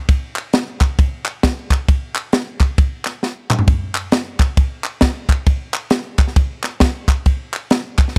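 A polished, up-front acoustic drum kit leads this uplifting gospel excerpt, its punchy kick, high-tuned snare, toms and dark ride cymbal swinging the eighth notes in 4/4 and breaking into a short fill at 3.2 seconds. A human group handclap joins at 0.4 seconds, crisp and close behind the kit. The hopeful groove sits in a dry, intimate 1970s-style studio sound, with the drums carrying an airy room character.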